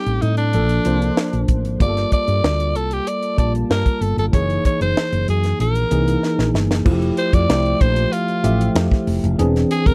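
A straight 4/4 groove from a funk drum kit with bright cymbals, a high-tuned snare and a tight kick drives this breezy, upbeat slice of polished 1980s jazz-funk pop alongside a growly, round fretless bass and a clean tine electric piano bathed in lush chorus. Up front, a raspy alto saxophone carries the melody with vibrato and a gritty pop edge, and a drum fill from 6.2 to 6.9 seconds leads into a new section on an Fmaj9 chord. The dry, close sound has a 1970s studio character with little reverb.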